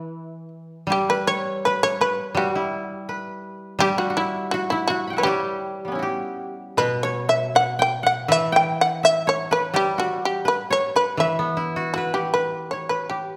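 Moderate recital-hall reverb, about 1.4 seconds of decay, surrounds this short passage of Japanese chamber music, cut from a longer piece. The mood is solitary and still, set in E kumoi with the tuning pitched at A4 = 437 Hz, and the rubato flow loosely follows a 2/4 metre around 81 BPM. Up front, a fretless shamisen carries the melody with a bright, buzzing, percussive plectrum-plucked tone, sitting loudest in the mix. Two kotos played with fingerpicks share the ensemble: one weaves a second line across a broad register, also close and present, while the other supplies a lower accompaniment a little further back. Both kotos have a dry, woody character, and all three instruments sound together from the opening through the end at 13.4 seconds.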